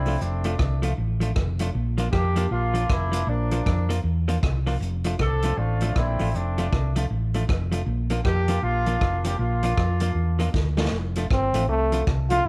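A bright trombone with light vibrato closes this upbeat, joyful ska excerpt with a short solo from 11.3 seconds, after a mellow, tight horn section carries the melody up front until 10.5 seconds. Underneath at 157 BPM with a swung feel in F major, a round, punchy hollow-body fingered bass anchors the low end while a dark, clean, compressed hollow-body jazz guitar picks out the accompaniment over chords moving between F6 and Bb. A roomy, distant big-band kit with a punchy kick, hi-hat, rim clicks and snare swings throughout and drops a brief fill just before the trombone takes over, all sitting in light studio reverb.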